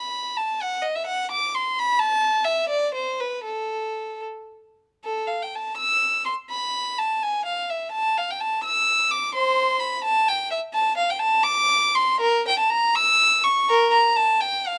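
A lone bowed violin opens this introspective, flowing baroque-style suite movement in A minor, moving in a rubato 6/8 at roughly 73-88 BPM by the dotted quarter. Played up front in period style, its gut-string tone is reedy with light vibrato, ranging from A4 to E6 in a light reverb. The passage, cut from a longer piece, moves into a new section at 5.1 seconds that carries on to 14.8 seconds.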